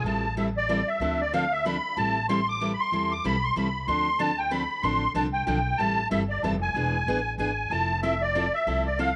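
A reedy, shimmering musette accordion carries the melody up front in this fiery, bittersweet excerpt of acoustic string swing in the jazz manouche style, played at 188 BPM in a swung 3/4 in A minor, tuned to A4 = 444 Hz. A bright picked steel-string acoustic guitar with fresh strings sits up front on accompaniment from 0.1 seconds, while a dark, woody upright bass with gut strings supplies thumpy pizzicato lines beneath. The harmony moves through Am7, Dm7, E7 and Fmaj7 under light reverb, and the accordion's wet tuning and band-limited tone lend a vintage character.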